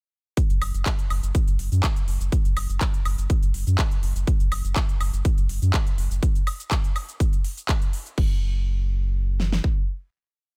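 Expansive and emotional, this brief progressive house piece at 123 BPM launches straight into a drop at 0.4 seconds, where a big-room dance drum kit pushes a punchy four-on-the-floor kick and huge snare up front, crisp programmed hats, shaker, woodblock, handclaps and crash pump under sidechain, and a round, deep, dark analog bass gallops in sixteenth notes between F#1 and F#2 with its own sidechain pumping, before a final note hangs in digital ambience from 8.2 seconds.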